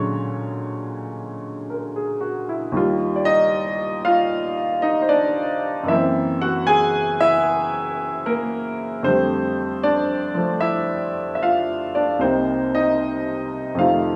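A clear, present upright piano sits up front in a moderate studio reverb, its woody, slightly detuned tone carrying a long sustain. This short solo jazz excerpt, cut from a longer piece, has a sophisticated yet relaxed mood, moving in 4/4 with a swung eighth-note feel. The piano plays alone throughout the 14.2 seconds, ranging from C2 up to Ab5. Its harmony drifts through rich colours, opening on Bb7alt, settling into Ebmaj9, passing through Gb7#11 and F69, and arriving on Cm7 at 12.2 seconds. The result is an intimate, unhurried sound.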